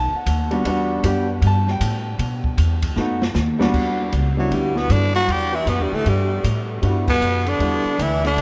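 Drenched in a huge, echoing reverb that suggests a vast space, this smoky, moody swing-and-bop excerpt opens with a deep-bassed concert grand piano comping over woody, pizzicato upright bass and a dark, smooth drum kit with a boomy kick and dark cymbals, which plays a fill at 3.0 seconds. At 4.4 seconds a raspy, growling tenor saxophone takes the up-front melody while a bright baritone saxophone, with vibrato and scooped notes, plays a second line beneath it. The band hits an accent at 7.0 seconds.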